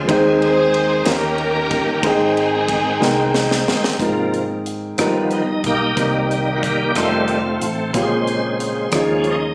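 Slow gospel in 6/8 at 61 BPM in Ab major, uplifting and reverent, where an intimate bowed string section carries the melody until 3.7 seconds over dark, woody upright piano, a round, punchy hollow-body electric bass and a dry, tight funk kit with a high-tuned snare, before a drum fill at 3.0 seconds leads into a shouting, lightly overdriven tonewheel organ solo from 4.0 seconds with key click, chorus vibrato and slow rotary speaker, all in light reverb with the roomy feel of a phone recording.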